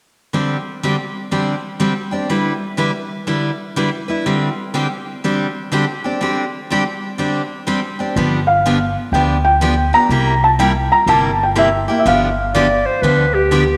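A bright, full-bodied picked steel-string acoustic guitar opens this playful, charming excerpt of acoustic string swing in G mixolydian at 123 BPM with a swung feel, its finger squeaks audible up front, before a woody, thumpy pizzicato upright bass on gut strings joins at 8.2 s, a soft, felt-muted upright piano carries an intimate, mellow melody through tape echo from 8.5 s, and a breathy subtone clarinet with light vibrato and a vintage tone adds a second line at 12.5 s, all set in a wet plate reverb.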